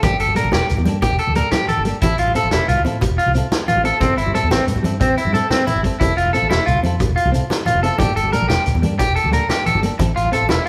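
Rolling in a straight 12/8 groove, this sunny, joyful highlife guitar band plays live together in a roomy studio, cycling between Gmadd9 and Fmaj7 with a turn to C6/G. Up front, a twangy electric guitar at the edge of break-up picks arpeggios through spring reverb, while a clean, compressed electric guitar fingers the accompaniment beneath it and a round, punchy fingered bass anchors the low end. A gritty, saturated vintage drum kit with a rolled-off top carries the beat, with damped, low-tuned congas in the background and a grainy, very quiet shekere adding texture.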